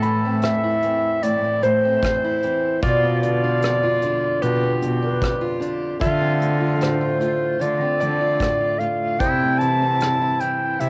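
A mellow clarinet carries the melody up front in a classical solo style, entering at 0.4 seconds with plate reverb and a cassette tinge. This acoustic folk-pop ballad moves at a straight 75 BPM in 4/4 in A minor, its intimate, melancholic mood shaped by a progression from Am through Bdim and Dm7 to C6. A dark, bowed cello holds the bass close and up front, played sul tasto with a soft attack, an airy bow and light vibrato, while a fingerpicked steel-string acoustic guitar supplies the accompaniment with audible finger squeak. Behind them, a felt-muted upright piano plays soft arpeggios in the background, its thin felt and action noise adding a homely texture. A clean, twangy pedal steel guitar, compressed and played with fingerpicks, adds a quiet second line with slide and volume swells, and a soft brush kit keeps time with a tight kick, hi-hat and rim click. The whole has the light reverb and intimate character of a home recording on cassette, cut from a longer piece.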